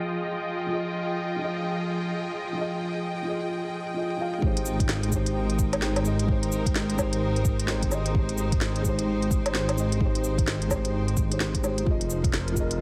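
A lush, bowed string section sits up front from the opening, holding vibrato-rich chords over a felt-muted upright piano whose soft, boxy accompaniment is darkened by a low-pass filter and trailed by tape echo, both parts breathing with sidechain pumping. This ghostly, melancholic future garage fragment moves at 129 BPM in 4/4 with a 61% swing on the sixteenths, shifting from Fm7 to Abmaj7 and back to Fm7. An organic electronic kit of woody snare, smooth hi-hats, cabasa and woodblock, all filtered and re-recorded in a large room, carries the groove from the start. At 4.4 seconds a deep electronic kick and a rumbling, detuned saw bass arrive, the bass saturated, beating and pumping. At 12.1 seconds an airy, wind-like noise texture on Bb4 drifts in, set in the background. A hall reverb and a bed of vinyl crackle lend the whole piece a hazy, faded atmosphere.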